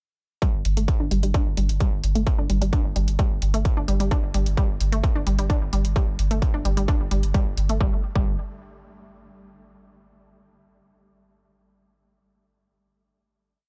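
A driving peak-time techno piece locks into a straight 4/4 at 130 BPM, built on a distorted, overdriven four-on-the-floor kick that sits up front in the mix, with a bit of studio reverb around it. Programmed closed and half-open hi-hats add a backbeat, their overdriven tone pumping against the kick and carrying a touch of reverb. Underneath, a deep, round sine sub bass holds G1, filling the space between kicks with a low rumble that breathes with sidechain pumping. On top, a juicy, squelchy resonant pluck between G3 and D4 repeats a 12-step loop that drifts against the bar, its detuned, bright tone thickened by chorus, trailed by digital delay and pumping with the kick. The groove runs from 0.4 seconds over a G5 harmony, and at 7.8 seconds the hats drop out and the music settles into a closing chord that rings until 9.7 seconds, leaving a dark, intense and fairly dry production.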